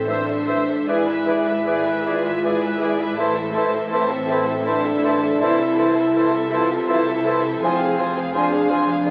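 A mellow French horn section sits up front from the opening moment, holding sustained chords over bowed strings in this elegiac, solemn slow movement for symphony orchestra, an extract cut from a longer piece in A minor and 3/4 at 80 BPM, with uneven, rubato beats. A rich violin section carries the expressive melody with vibrato and a soft attack, while a second, lush violin line and a smooth, even viola accompaniment stay in the background. Beneath them, a warm cello section and a clear double bass section share the bass, both bowed with vibrato. From 0.1 seconds the woodwinds join with their own lines: an airy, very quiet silver concert flute, a vintage-toned cor anglais with light vibrato, a clarinet set in the background, and a distant, roomy bassoon adding accompaniment. The harmony moves from A minor through E7 over G sharp and back, turning darkly to F minor near 7.6 seconds. Everything is bathed in a wet scoring-stage reverb and the crackle of a very old 78 rpm record.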